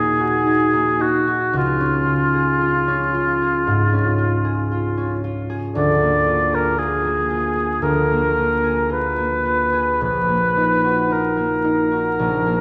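A mellow oboe with light vibrato and soft attacks sings a melancholic, yearning melody over fingerpicked, ringing concert harp accompaniment in this romantic classical duo, played with a free rubato feel, heard from further back in a scoring stage's lush reverb with a layer of vinyl crackle, and cut from a longer piece.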